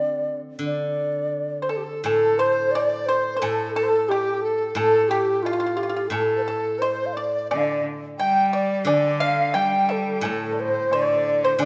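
Chinese traditional chamber music in D yu mode, this wistful, tender excerpt moves at 88 BPM in 2/4 with a rubato feel. A low xiao carries the melody from the start, its airy, reedy bamboo tone marked by vibrato and a crisp attack, over a steel-string zither whose fingerpicked notes ring with a silvery shimmer in the low register. Within the first couple of seconds a dry, percussive pipa and a large dizi, pure-toned with its buzzing membrane and soft attack, join as second lines in the same range as the xiao, while a very quiet woodblock adds close, dry percussion from 2.1 seconds. At 7.5 seconds a single bowed cello enters with a focused, vibrato-laden line beneath. The ensemble sits in a moderate scoring-stage reverb that lends a gentle sense of space, and the passage is cut from a longer piece.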